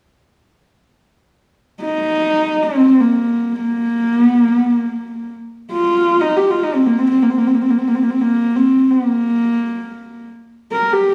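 A single dark, husky horsehead fiddle carries the melody in this short excerpt of Mongolian traditional music, entering at 1.8 seconds and playing through to 11.1 seconds. Bowed on horsehair strings by one player, it moves in free time within a Bb zhi mode, ranging from Bb3 to Bb4 with a tuning reference of A4 = 439 Hz. Its soft attack, light vibrato and gliding portamento give the line an airy, intimate quality, and the bow sits close and up front. Around it, a stone room adds a reverb of 1.3 seconds, lending the live, single-room performance a vast yet proud mood.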